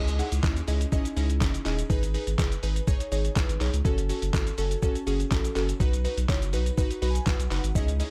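Energetic and driving, this short dance-pop clip moves at 123 BPM in a straight 4/4, cut from a longer piece. A lo-fi, sampler-style drum kit sits up front with a thumpy kick, a medium-tuned snare, handclaps, hi-hat and shaker, all compressed, pitched down and muffled, with the character of a small room. Beneath it, a deep, thick sub bass with a saturated triangle tone holds sustained notes, pumping through sidechain compression. Glassy digital keys with a sine-like, full-bodied sound carry the chords C#madd9, G#m, F#m and B, their decaying notes evolving through a filter sweep and a chorus effect while they too pump with the beat. The keys add a short fill from 6.8 to 7.8 seconds, and the whole mix stays dry and close, with little reverb.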